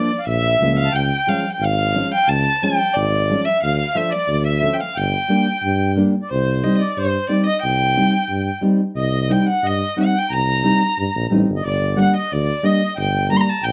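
A bowed violin sits up front with a smooth, warm voice and vibrato, carrying the melody of this soulful, festive klezmer excerpt in straight 2/4 at 90 BPM. Beside it, a reedy single-reed accordion with dry tuning plays a clear second line, while a thumb-plucked nylon-string guitar gives classical-style acoustic accompaniment close to the listener. A mellow tuba enters at 0.3 seconds on the bass, its tone smooth on top and touched with light vibrato. The music begins in G dorian with a sharp fourth, moving through Bb, C#, Dm and Gm before shifting to C minor at 6.3 seconds and returning to Gm near the close. A moderate small-room reverb gives the ensemble an intimate, close-knit setting, tuned slightly low at A4 = 438 Hz.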